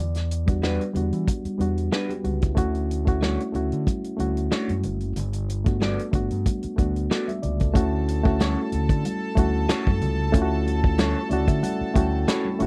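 A worn, reedy electric piano sits up front in this short, cinematic cut of lush 1970s-style soul, its slightly out-of-tune voice carrying the chords through Em9, Dmaj7 and Gmaj9 at an unhurried 93 BPM with a gentle swing on the sixteenths. Beneath it, an overdriven fingered electric bass adds a punchy, amped growl, while a dry soul drum kit with a tight kick, a medium-tuned snare and a rolled-off top keeps the groove close and mid-forward. Soon after the start, an electric guitar through a small old amp plays a slightly broken-up, lo-fi riff coloured by phaser, and thick-skinned congas patter softly in the background. At 7.8 seconds the music moves to a new section on Dmaj7, where a chamber string section enters with a rich, gut-string period tone, bowing a second line. The electric piano closes with a fill from 11.0 seconds, rounding off a silky, close studio sound with little reverb.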